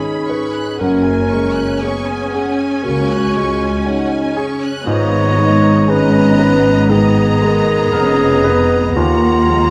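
Uplifting and tender, this cinematic excerpt moves at a slow, rubato 59 BPM in F# major, with a lush violin section carrying the melody in vibrato while a dark, distant clarinet and a second, smooth-topped violin section weave supporting lines alongside rich, expressive violas and a polished grand piano in the background. A mellow French horn section holds sustained chords with light vibrato, and from 0.8 seconds a smooth cello section and woody double basses join to anchor the bass. The whole ensemble sits in a reverberant recital hall, drifting through suspended and add9 harmonies.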